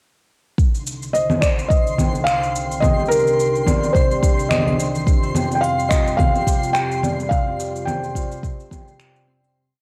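A soft, deep electronic kick and a clicking found-sound beat of cabasa, congas and finger snaps set a gently swung 107 BPM groove in C minor for this short, wistful, autumnal folktronica piece, where a mellow, intimate felt-muted upright piano carries hook phrases over a warbling, detuned analog pad moving from Cmadd9 to Fsus2, a dark vibraphone loops a 12-step sequence that drifts against the bar through analog delay, a bright fingerpicked concert harp joins with ringing arpeggios at 2.8 seconds, and a twinkling granular shimmer holds a high note, all colored by cassette tape in a light, home-recorded sound before a fade-out from 6.6 seconds.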